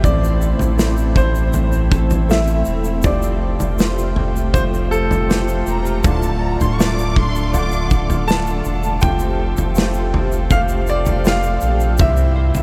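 Emotional and heartfelt, this pop ballad section, cut from a longer piece, moves through a gentle chord cycle built on Am, Fadd9 and Dm before resting on C. A clear, polished baby grand piano carries the melody with a touch of delay. Beneath it, a barky tine electric piano adds bright accompaniment through an ensemble chorus, and a pipe organ's nasal cornet stop holds sustained chords with a baroque chiff in the background. A small, fingerpicked nylon-string guitar plays very quiet arpeggios, while a thick, saturated sub bass sits up front alongside a loose indie drum kit with a tight kick, a medium-tuned snare, toms and a pumping room sound. A grainy egg shaker adds texture behind them, and from 5.7 to 8.1 seconds a lush symphonic violin section enters with a second line, bowed with expressive vibrato and its own delay. The whole mix is soaked in a huge ambient reverb that gives it a dreamy, suspended atmosphere.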